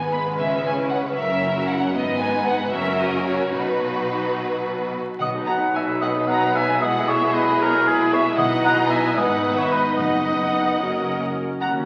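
Bowed chamber strings open this cheerful, graceful classical-period movement in B major, with the violins carrying a rich, focused melody up front and a second violin line singing closely beneath, while violas and cellos supply smooth, vibrato-laden accompaniment and bass in the background and double basses add a warm, expressive bowed bass. At 5.2 seconds a distant oboe solo enters with a second line, joined by dark, roomy sustained chords from the French horns and very quiet, articulate timpani strokes on hard mallets. The 6/8 pulse moves at 75 BPM in dotted quarters with a rubato feel, heard through the crackle of a very old 78 rpm record and the wet reverb of a scoring stage.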